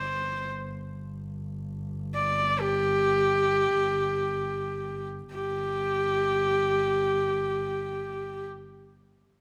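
A single bowed horsehead fiddle leads this excerpt of Mongolian folk music, its husky, earthy horsehair tone sitting up front as it sings the melody between G4 and D5 with light vibrato and gliding portamento. Beneath it, one double bass holds a low G1 drone, played sul tasto with a soft attack and a dark, close, intimate sound, much quieter than the fiddle. Both players draw an airy bow and lend their notes a touch of vibrato, and the music moves in free time, evoking a vast, windswept mood. The opening phrase slows as it unfolds up to 5.3 seconds, where a new section begins and carries on until the cut at 8.6 seconds. A reverberant recital hall surrounds the pair with a wet, 1.5-second tail, giving the bright fiddle line plenty of space to ring.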